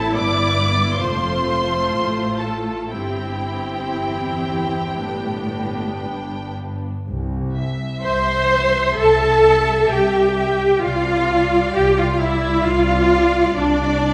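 The cello section carries the most weight, its expressive, warm bowed tone with vibrato sitting slightly distant yet prominent in the blend as it moves across the bass and tenor range. This is a slow, serene romantic movement for string orchestra in C major, in 4/4 with a rubato feel between 56 and 71 BPM, cut from a longer piece. Above it, a focused violin section sings the melody with a smooth top, while a second violin section adds an even, distant second line, and the violas fill the middle with a lush accompaniment. The double basses anchor the low end with a rich, steady presence. Every section plays from the start to 14.1 s, the harmony moving from A minor through F and G before arriving on C as a new section begins at 7.1 s, with the ensemble set in a wet scoring-stage reverb of 1.6 s.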